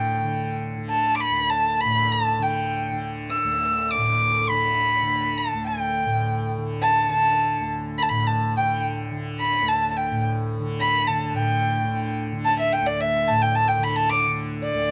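Devotional and meditative, this Hindustani classical fragment in raga durga sets a single bowed violin, rich and smooth with even vibrato, singing the melody up front over a bright, buzzing, shimmering tanpura drone that sounds throughout. In a 5/4 that gradually speeds up, the music moves into a new section at 11.3 seconds. The dry, close sound captures a small room in a 1970s-style studio.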